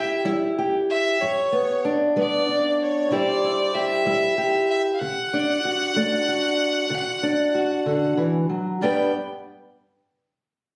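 A slow, swaggering 12/8 pulse at 63 BPM carries this laid-back acoustic country blues duo in G major, where a clear, focused bowed fiddle with light vibrato sings the melody up front over a dark, boxy fingerpicked parlour steel-string guitar moving through C, G and D, both parts sounding together until 9.1 seconds in a phone-captured room touched with light reverb, cut from a longer piece.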